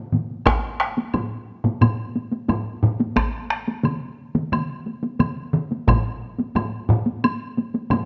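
Driving and ceremonial, this short cut from a longer piece of Japanese traditional taiko drum music moves at 89 BPM in a straight 4/4. Four taiko ensemble parts played with hard sticks sit up front, three of them from the opening moments and the fourth entering at 0.5 seconds. Two are close and dry, while one carries a compressed, saturated punch and another has a small-room ambience. A woodblock with a woody, dry tone joins at 0.5 seconds and stays through to the end. One of the taiko parts drops out at 5.7 seconds, and another stops at 6.0 seconds. The whole performance sits in a moderate recital hall reverb, captured with close, detailed microphones.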